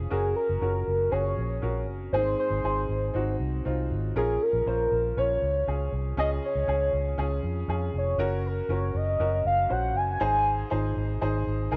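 A woody, boxy upright piano with a cassette-tape tint and a round, foam-muted electric bass open this hopeful, piano-driven pop cut at 119 BPM, and from 0.1 seconds a velvety, chorused synth lead with vibrato and the same tape coloring carries the melody over a Gb, Ab, Bbm, Db progression in a lightly reverberant, homemade-sounding mix.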